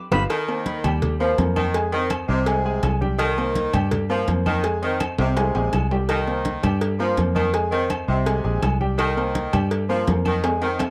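Heard in a small room with moderate spring reverb, this driving, fiery salsa excerpt sets a dark, round, foam-muted fingered electric bass and a clear, punchy saxophone section up front over a worn concert grand piano accompaniment moving between Cm7 and Fm7, while tight, high-tuned bongos and cowbell, bright congas, ringing timbales and agogo bells, and woody, distant claves fill out the percussion, with drum fills at 5.2 and 10.4 seconds.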